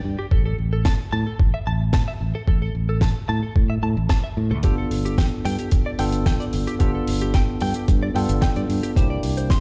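A gritty, thumpy electronic kick sits up front in this nu-disco excerpt, its sampler-style, compressed tone carrying a tape-warm body at 111 BPM in a straight 4/4. Beneath it, a fingered electric bass plays up front in a low register with a warm, direct sound from the very start, while a damped 70s drum kit adds dry, mid-forward hi-hat and a fat snare from 0.8 seconds. A clean, direct-recorded electric guitar picks a high, scooped riff, treated with analog chorus and tape echo. At 4.6 seconds a bright tine electric piano joins as accompaniment, clean and close, with its own tape echo. The mood is cosmic and sensual, moving from A5 to G7 and C7 chords, and the whole mix sounds as if played on a big sound system in a bare room, with large studio reverb.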